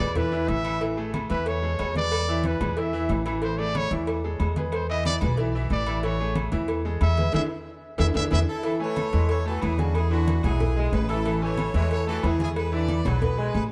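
A woody, thumpy upright bass sits up front in this joyful, danceable salsa excerpt at 184 BPM in A major, beneath a bright, punchy trumpet solo that gives way at 8.3 seconds to a brilliant, loosely played horn section, joined at 8.8 seconds by a clear, vintage trombone section in the background, while an intimate baby grand piano with audible action noise, low-tuned congas, a tight cowbell and ringing agogo bells and timbales drive the rhythm under a moderate plate reverb.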